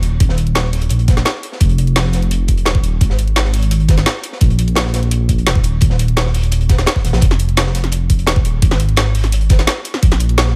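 A dark, detuned sawtooth bass rumbles up front between Eb1 and Bb1 in this lush, melancholic liquid drum and bass excerpt at 171 BPM, driven by a knocking, tape-warm electronic kick, an overdriven kit with a woody snare and bright hats, and a gritty, saturated breakbeat kit with a high-tuned snare and rolled-off top, all in a dry, close sound.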